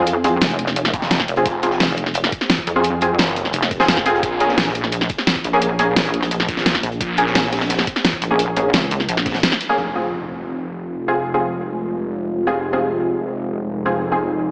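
Tense and mechanical, this dark technical drum and bass cut opens with a bold, nasal orchestra-hit-like synth stab trailing dub echo over a pulsing, heavy chorused wobble bass, joined by an up-front dubstep kit with a huge snare and bright hats, a very quiet, gritty breakbeat kit, a knocking electronic kick and a swirling, phased detuned saw bass, until a band accent at 9.4 s gives way at 9.8 s to an evolving, resonant pad pumping against the beat and a background impact, with the mix set in a lush hall and an AM radio tone.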